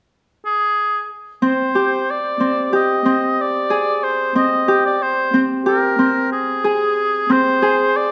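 Set in a moderate stage reverb, this restless, pensive excerpt of contemporary chamber music in an uneven 9/8 meter opens with a clear, smooth-topped oboe singing a classical-style solo melody with vibrato from 0.5 seconds, joined at 1.4 seconds by up-front, fingerpicked Celtic harp arpeggios that ring out warmly beneath it over a sustained suspended chord.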